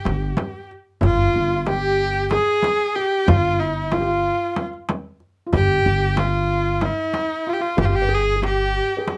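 Melancholic and hypnotic, this Turkish makam ensemble excerpt moves at 186 BPM in eighths in a straight 7/8, tuned to A4 = 438 Hz. A clear, bowed kamancheh carries the melody up front with vibrato, portamento and a slapback echo, while a felt-muted upright piano plays a mellow second line in the background with audible action noise, and a woody, thumpy pizzicato upright bass on steel strings anchors the low end. A crisp, deep metal-shell darbuka and a frame drum played with soft hands round out the close, detailed sound over the 9.2 seconds.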